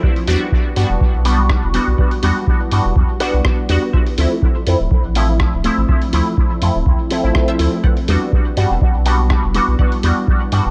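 An echo-heavy mix with light reverb and digital ambience opens this cavernous, nocturnal slice of dub techno, cut from a longer piece and set in a lightly swung 4/4. A deep electronic kick anchors the groove from the start, joined at 0.2 seconds by a muffled, pitched-down sampler-style kit of hi-hat and rim click. A round sine sub bass enters at 0.3 seconds and pumps against the kick. Up front, a juicy, detuned sawtooth polysynth plays resonant stabs through chorus, phaser and dub echo, its filter sweeping across the whole passage. In the background, a muted, wave-folded chord stab repeats its riff with a short filter pluck, lush chorus, phaser and trailing dub echo. Beneath it all, a very quiet, moody unison pad with a sub octave and slow attack sustains the Em9 and Dm9 chords.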